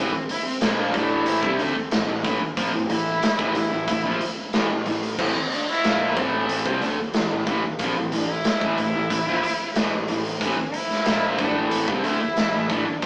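A gritty, saturated garage drum kit sits up front from 0.3 s, its punchy kick and medium-tuned snare ringing in a bright stone room, driving this dark, cathartic quiet-loud alternative rock passage at 92 BPM in 4/4, held on A minor. A bright distorted electric guitar and a compressed fuzz guitar grind out riffs over a growly, overdriven picked bass in the background, while a distant bowed cello sings a woody, vibrato-laden melody. The whole piece has a rough rehearsal-room, small-speaker sound with wet reverb, and it is cut from a longer piece.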